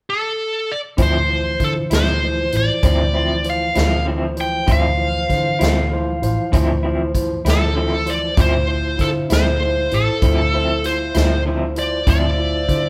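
A smooth, bright overdriven lead guitar opens alone over an unaccompanied pickup before the band settles onto a Dm9 chord at 1.0 s, beginning a mournful, smoky slow blues in D minor at 65 BPM in a straight 12/8. Beneath the up-front lead, a slightly broken-up guitar through a small old amp adds tremolo, a barky, gritty tine electric piano pulses with medium tremolo, and a clean tonewheel organ with key click sustains chords through a slow rotary speaker in the background. A dark, round, foam-muted electric bass and a swinging big-band drum kit with a punchy kick and medium-tuned snare anchor the band, heard playing live together in a large studio with moderate reverb.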